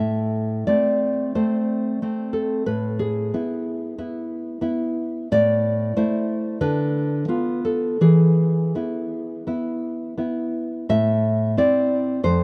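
A dark, full-bodied nylon-string guitar, fingerpicked and placed up front, carries this short, intimate fragment of a romantic solo classical piece, cut from a longer work. The wistful playing moves in a loose rubato over a 4/4 pulse, with harmonies passing through Am, E/A, Bdim/D and E before resolving to Am at 10.9 seconds. A light reverb gives the deep classical tone a gentle sense of space.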